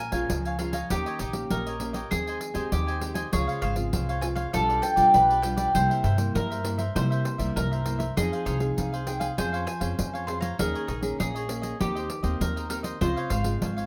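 Bittersweet and lively, this 13.9-second excerpt of samba and choro moves at 99 BPM in a straight 4/4, with a picked, double-strung mandolin carrying the melody over a quieter second mandolin line, crisp cavaquinho and full-bodied fingerpicked nylon-string guitar with finger squeak, a thumpy gut-string upright bass and a jingly, close and dry pandeiro, all in moderate studio reverb as the harmony wanders from Bbm7 through G7/B and C7 to settle on Dbmaj7.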